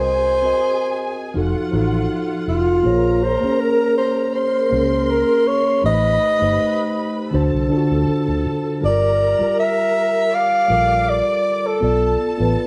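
A breathy, intimate alto saxophone carries the romantic melody from the start of this lush 1970s-style soul excerpt at 80 BPM with a gentle swing, over a mellow tine electric piano, a dark, round, foam-muted fingered electric bass and a distant, bowed string section adding a smooth second line, all playing live in one room with large studio reverb through changes such as Cm7b5, F7b9 and Gm9.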